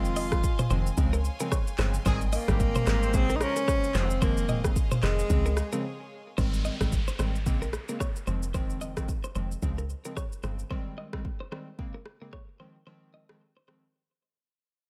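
This breezy, joyful afrobeats excerpt opens with an up-front tenor saxophone carrying the melody, its jazz-style line marked by vibrato, scooped notes and delay. Beneath it sit round analog keys with chorus, bowed strings in the background, and an electronic afro-pop drum kit of deep kick, smooth hats, handclaps, rim click, shaker and toms. At 111 BPM in 4/4 with a swung 16th-note feel, the groove rests on a dark, percussive log drum bass, and a bright, twangy clean electric guitar riff with delay joins almost at once. A tight, punchy horn section with octave doubling adds a brief second line from 2.1 to 4.1 seconds. After a short break at 5.8 seconds, the saxophone and strings drop away and an electronic downlifter appears, while the keys, guitar and drums keep cycling through Fm7, Dbmaj7, Abmaj7 and Bbm9 as the track fades out to a final break. The sound is dry throughout.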